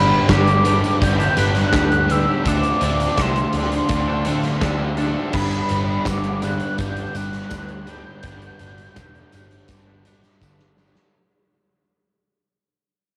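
A velvety, detuned synth lead sings the melody through chorus, tape echo and cassette coloring over a wistful, dreamy shoegaze and dream pop backdrop: a huge, punchy arena drum kit with bright cymbals and a pumping room sound enters at 0.3 s; a crunchy, double-tracked overdriven guitar, a dark and very quiet fuzz guitar and a clean, twangy electric guitar touched with reverse reverb share the riff; a round, foam-muted electric bass anchors the low end; a soft, mellow analog pad hums underneath; and a jingly tambourine joins at 6.1 s, all within a hazy home-cassette recording that fades throughout and closes on a drum fill from 10.4 s, cut from a longer piece.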